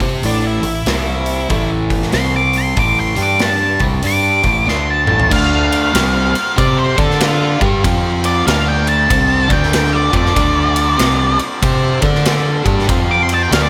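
A swung 4/4 groove carries this brooding, smoky blues rock and southern rock passage. A big acoustic rock kit with a punchy kick sits up front alongside a round, foam-muted fingered bass and a bright, double-tracked, crunchy guitar riff. A dark octave-fuzz lead guitar carries the melody from 0.3 s, and a drum fill at 4.7 s launches its solo at 5.3 s, where a very quiet, gritty tonewheel organ enters with sustained chords through a rotary speaker, all bathed in a lush hall reverb for an arena-sized sound.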